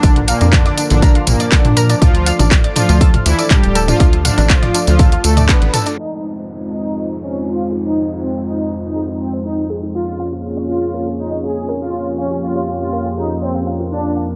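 A dramatic, cinematic melodic techno passage at 121 BPM opens on a full drop, with a punchy, up-front electronic kick, a tight sawtooth sequencer bass, a tape-warm house kit of handclaps, low-pass-filtered hi-hats and toms, a very quiet cloth-damped acoustic kit with a fat snare, and a jingly, close tambourine, all under a smooth detuned supersaw melody with phaser and tape echo, a deep, moody analog pad and a warbling, lo-fi pluck arpeggio in the background. The band hits an accent at 5.5 seconds, and the drums and bass drop out by 6.0 seconds as the chords darken from Bb and Dm to Fm7. A resonant, evolving analog drone on F2 enters at 6.3 seconds beneath a filter sweep, a faint downlifter and the still-pumping pad, pluck and supersaw, with the harmony settling on Db6.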